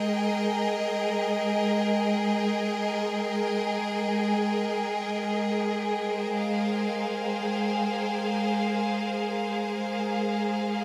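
The recording is bathed in a wet cathedral reverb whose 6.3-second tail fills a vast, echoing space, yet the strings still sit close and up front. This ambient excerpt, cut from a longer piece, moves in free time in Ab major with a luminous, peaceful mood. A bright studio string section plays alone throughout, its bowed ensemble tone intense and shimmering with vibrato across a span from Ab3 to G5. The opening harmony rests on Eb over Ab, and at 5.7 seconds it settles onto an Ab69 chord for the second part, which runs to 10.8 seconds.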